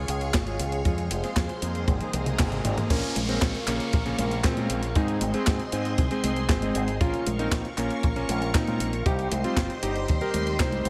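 A boomy acoustic kick and an overdriven, sampler-style drum machine with gated reverb, the latter sitting up front in a light reverb, drive this melodramatic, nostalgic Italo disco excerpt at 117 BPM in Bb dorian, where lush string machine chords with ensemble chorus and fat, brassy synth stabs in the background ride over a bright fingered bass with an envelope filter. After a drum fill and band accent, a vintage electric grand piano with a clangy low end and delay takes the melody from 2.9 s over chords moving from Bbm to Ab and on to Cm. A very quiet riser and downlifter pass through between 1.2 and 7.0 s.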